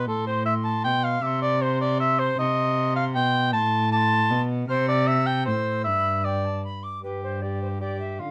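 Set in a light reverb, this short cut from a longer classical piece is a courtly, festive Renaissance-style consort dance in 3/4 at 155 BPM, moving through G mixolydian harmony from Am and Cadd9 toward a closing G. An up-front cor anglais carries a mellow second line with light vibrato, over a rich, bowed cello bass whose gut-string, period-style tone has a reedy edge. An airy alto recorder sings the melody with a soft attack, a touch of chiff and expressive vibrato, sitting distant in the background, and a new section begins at 7.0 seconds.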